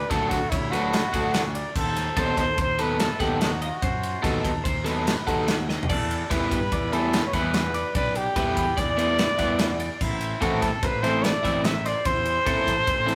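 Set in a straight 5/4 metre, this cut from a longer math rock and midwest emo piece feels intricate and bright. A breathy trumpet carries the melody from the opening, its soft attack, vibrato and whispered, intimate tone giving it a vintage, solo character. Behind it, a clean twelve-string electric guitar picks twangy, compressed arpeggios through a phaser, sitting in the background. Just after it comes in, a double-tracked overdriven guitar drives the riff, while a fuzz fingered bass adds a dark, round, overdriven low end. The acoustic drum kit sounds airy and polished, with a punchy kick and medium-tuned snare up front, and a fill at 5.7 seconds leads into the Em9 chord before the harmony settles on Am. The rough rehearsal-room recording carries a moderate studio reverb.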